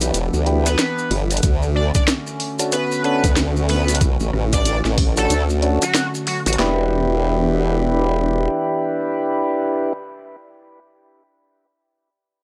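A dry, gritty hardware recording of a swaggering, playful glitch hop excerpt with a swung feel, where a warbly tape-like pad sits dark in the background under a mellow tonewheel organ playing stabs through slow rotary speaker and analog delay, a formant-sweep wobble bass and a layered drum and bass kit with a cracking snare sit up front while grainy maracas stay in the background, an edgy sync lead with vibrato carries the melody from 0.7 s, and a thumpy, overdriven boom bap sampler-style kit with handclaps and a high-tuned snare joins at 1.4 s before both kits stop by 6.8 s as the chords return to Em7.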